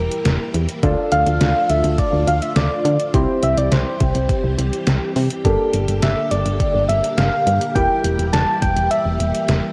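A home cassette recording with a moderate spring reverb gives this synth-pop fragment, cut from a longer piece, a worn, roomy sheen. At 104 BPM in a straight 4/4, the mood is driving yet cool. A detuned 8-bit drum machine enters at 0.1 s, its thumpy kick, medium-tuned snare and hi-hat overdriven and re-recorded in a small room, sitting up front beside a punchy, round, dark FM bass with a fast, decaying attack. Over them, a gentle, mellow struck FM synth lead carries the melody with chorus and vibrato. A clear concert grand piano accompanies in the background, while a lush sawtooth string machine with a sub octave, moving notch and slow attack sustains chords through Edim, Dm, C, Gmadd9 and back to Edim.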